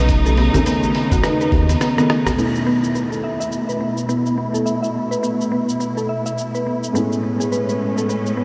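Mystical and dreamy, this organic downtempo excerpt at 105 BPM with a lazy 16th-note swing sets a felt-muted upright piano, soft and boxy with audible action noise, beneath lush, bowed studio strings and a woody FM mallet-like synth pluck arpeggiating through chorus and delay, while a deep, round analog bass, a thumpy electronic kick and a tight, cracking djembe join a gritty, tape-dusted sampler-style kit of cabasa, hi-hat, rim click and toms until bass and kick fall away before a drum fill at 1.8 s, leaving strings, piano, pluck and kit to drift from 2.4 s, all soaked in a huge ambient reverb.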